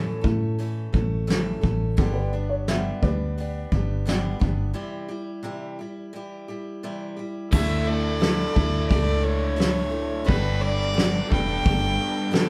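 Folk rock with a heartland rock lean, this short cut from a longer piece has an open-road, warm mood and a straight, steady four-beat feel. A picked steel-string acoustic guitar and a round, foam-muted fingered electric bass carry the opening. Beside them, a soft brush drum kit sits up front, giving a fat snare and tight kick in a natural small room. At 2.0 seconds a dark upright piano adds a brief, woody second line with audible action noise, and a break arrives at 4.8 seconds. From 7.5 seconds a nasal, reedy fiddle with gut-string tone takes the melody through tape echo, while a double-tracked overdriven electric guitar plays a biting riff and a very quiet tonewheel organ holds sustained chords with key click and slow rotary speaker. The band sounds like it is playing live together in one modest room.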